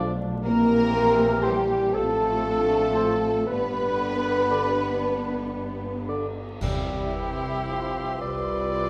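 A distant, lush studio violin section sings the melody from 0.4 s in this tender, slow romantic orchestral excerpt in C major, rubato 6/8 at about 37-42 BPM, over a close, rich cello section and smooth double basses, while a dark clarinet, a present cor anglais, a hollow silver flute and background symphonic violins weave second lines, violas and a bassoon accompany, trombones and very quiet, roomy horns hold chords, loose trumpets add stabs, a dry cymbal swell with clash cymbals and concert bass drum enters at 3.5 s, and timpani on C3 join at 6.6 s with a band accent, set in a recital hall with vinyl crackle.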